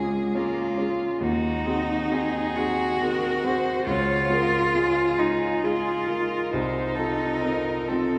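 Lyrical and serene, this brief fragment of a slow romantic movement for piano trio unfolds in triple time with a flexible, rubato feel. A single bowed violin carries the melody in a middle register, its warm tone coloured by vibrato and expressive portamento, though it sits distant and quieter than its partners. Beneath it, one cello sings a smooth, even second line with a rich, vibrato-laden sound that stands up front in the balance. The grand piano supplies polished, present accompaniment reaching down into a deep bass, and all three parts play together throughout the 8.2 seconds. A wet cathedral reverb with a long 5.1-second decay fills the church or concert hall, while the harmony moves gently from the home chord through dominant colours before ending on an unresolved seventh chord at 6.5 seconds.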